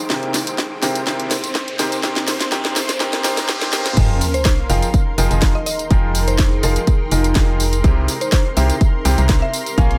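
A punchy, up-front electronic kick drives this bittersweet, soulful piano house excerpt at 124 BPM in 4/4, with a light 16th-note swing, while a house kit of cracking snare, hi-hat, tambourine and crash cymbal fills out the groove and plays a fill through the opening build-up. In F minor, a clear, polished baby grand piano carries the riff through low-pass filtering, delay and sidechain pumping, over a silky, detuned sawtooth string pad with ensemble chorus and a cloudy, blurred granular pad with its own reverb, both sitting in the background. During the first four seconds a filter sweep on the string pad and a background riser build tension over C7 and Bbm7 chords. The drop arrives at 4.0 seconds on an Fm11 chord with an impact and sub drop, as a hollow, dark, organ-like FM bass enters and pumps in the low register. From 4.3 seconds a woody, mellow mallet-like pluck adds a melody with chorus and delay, and the harmony returns to C7 near the end of this piece cut from a longer track.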